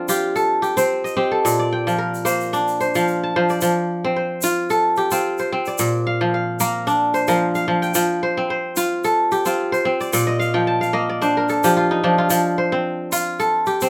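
A lightly swung 4/4 groove at 110 BPM carries this joyful, hypnotic West African traditional piece for string and xylophone, cut from a longer performance in F mixolydian and moving between F and Bb. The fingerpicked acoustic kora sits up front, spinning mellow, ringing, crisp arpeggios from Bb2 to A5, with a fill between 10.1 and 12.3 seconds. A grainy, bright egg shaker sits distant in a large room, all under a light reverb.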